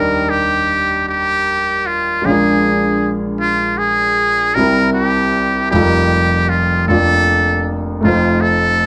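A buzzy, metal-muted trumpet sings a jazz-style solo melody with light vibrato over an intimate grand piano whose long sustain and audible action noise fill out the accompaniment, giving this brief, uplifting gospel passage in Bb major a hopeful, unhurried sway at 52 BPM in 6/8, with both players up front in a live room of moderate reverb.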